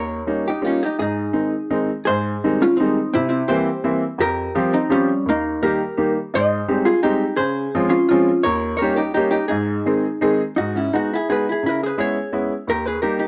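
A dark, clean hollow-body electric guitar carries the melody from the start over a clear, woody, slightly detuned upright piano with long sustain, both up front and closely miked in light reverb, giving this bittersweet, nostalgic musette in 3/4 an intimate, vintage feel before it shifts to a new section at 10.6 seconds and ends where it was cut from a longer piece.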